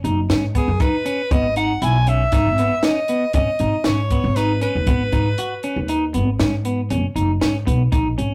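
This short excerpt of progressive instrumental band music moves in 7/4 at 118 BPM with a straight feel in G# minor, and its mood is tense and driving. A compact cocktail drum kit sits up front with a dry, high-tuned snare, a punchy kick and hi-hat. Beside it, a pizzicato upright bass on steel strings sounds woody, bright and thumpy. A clean, picked electric guitar with a warm tone plays arpeggios in a middle register as the harmony moves from G#m7 to Emaj7/G# and settles on G#m. From 0.6 to 6.1 seconds a soprano saxophone takes a pop-style solo melody with a pure tone and light vibrato. The whole band is captured in a rough rehearsal-room recording with saturation and a wet, small-room ambience.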